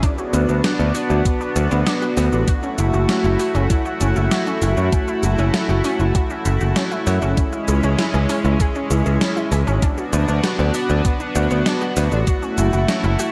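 Synthwave at 98 BPM in a nocturnal, cinematic mood, this short cut from a longer piece sets a shimmering, detuned pulse-width pad holding sustained chords with sidechain pumping over an up-front, growly picked electric bass entering at 0.3 s, a thumpy overdriven electronic kick, a gated 80s digital drum machine of hi-hat, shaker and gated-reverb snare, and a punchy, wave-folded unison pluck playing arpeggios through analog delay in the background, all moving through Bm/D, F#m7 and C#m in a dreamy mix soaked in hall reverb.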